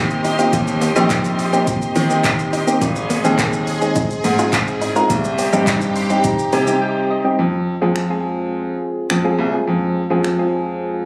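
This dance-pop excerpt opens at once with soft, round electric-piano-like synth keys, a filtered supersaw swell holding sustained chords, and a clear baby grand piano playing the bass line, all three breathing with sidechain pumping at 105 BPM in a straight 4/4. The mood is bittersweet yet driving, and the chords move from Eb6 through Ab and Cm before landing on Fm at 7.4 seconds, where the supersaw drops away and the second section begins. A smooth R&B kit of finger snaps, handclaps, hi-hat, shaker and a soft kick sits a little behind the keys, its electronic hats warm, while a bright, compressed clean electric guitar picks a riff in the background with analog chorus until 6.6 seconds. The chorused synth keys stay up front with a filter sweep and a quick, decaying attack, adding a fill near the end of the first section just before a brief silent gap from 6.8 to 7.4 seconds. The detuned sawtooth swell evolves slowly with a filter opening, while the piano bass stays open and short in sustain. 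Light reverb and a club-like ambience, captured on a phone in the room, give the whole mix a roomy, casual sheen.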